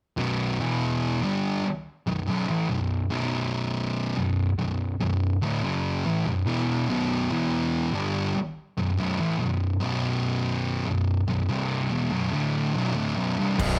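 Brooding and heavy, this stoner and doom metal excerpt in B minor crawls at 72 BPM as two thick fuzz guitars, one dark and one warm, grind out a riff over a Bm chord in light reverb, and at 13.6 seconds a bright, double-tracked overdriven guitar, a growling fingered bass on a low B and a big-room drum kit with a punchy kick and crash cymbal crash in together alongside them.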